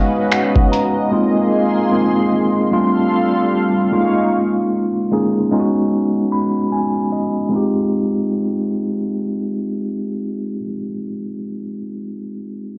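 A mellow tine electric piano and a lush, detuned sawtooth pad with chorus and phaser open this sensual, late-night contemporary R&B excerpt in F minor at 75 BPM, with the pad stopping at 4.3 s; gritty, overdriven sampler-style drums with finger snaps, hi-hat and a thumpy kick sound only briefly from 0.3 s, while the piano adds fills over suspended ninth chords that resolve to Fm9 at 7.5 s, all heard through a filter sweep and the soft haze of a home cassette recording.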